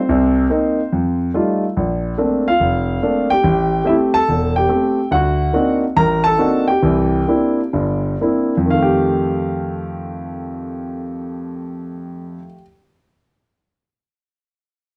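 Swung eighths in 4/4 carry this relaxed solo jazz fragment, where a warm, up-front concert grand with deep, natural bass moves through Cm7, F9 and Bbmaj9 toward D7b9b13, easing its pace between 5.1 and 8.7 seconds before settling on F9, all framed by a wet small-room reverb.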